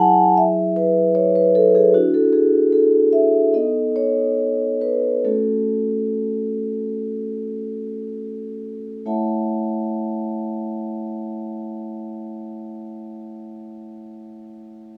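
A mellow, up-front solo vibraphone played with soft mallets, motor off, rings out in a moderate small room as a playful, rubato contemporary classical passage, cut from a longer piece, that eases into a gradual slowdown from 0.4 to 9.1 seconds across sus2 and ninth harmonies before a brief new section begins at 9.1 seconds.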